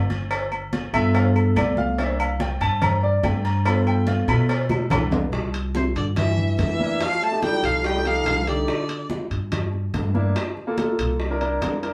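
Set in a single room with a wet studio reverb, this sunny, danceable Afro-Cuban jazz excerpt, cut from a longer piece, moves at 143 BPM in a straight 4/4. The warm, intimate grand piano sits up front, its action noise audible, and takes a solo in the opening bars over a woody, dark pizzicato upright bass that is also close and present. Bright, high-tuned congas played with hard hands stay in the background, while round, low-tuned cowbell and bongos sound distant in a large space and ringing agogo bells and metal-shelled timbales carry a small-room character. A percussion fill at 4.7 seconds leads into the second section, where a clear, focused erhu enters up front at 5.8 seconds, bowed with vibrato and portamento, joined by a jazz-style trombone with scooped notes as a second line until 9.1 seconds. The harmony cycles through rich ninth chords such as G9, C9 and F9, touching Gm6 and Fadd11/C before settling back on C9.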